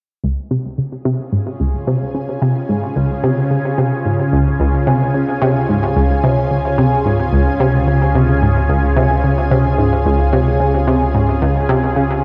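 Ambient, sequencer-driven space music at 110 BPM in 4/4 with a straight feel, this luminous, expansive excerpt centers on Db and sits in a dreamy mix soaked in plate reverb. An analog pluck opens at 0.2 seconds with a detuned sawtooth riff, its fast attack and decaying filter pluck made bright and up front by chorus and delay. Over the first seconds a filter sweep moves across this arpeggio sound while a fade-in brings up the pad, which enters at 1.2 seconds. That lush unison pad is thick and detuned, blending sawtooth and square waves into slow-attack sustained chords with chorus and phaser. At 4.6 seconds the music moves into a new section as a round analog bass arrives on a deep, mellow, wave-folded Db, its evolving square-and-sine tone anchoring the shimmer above.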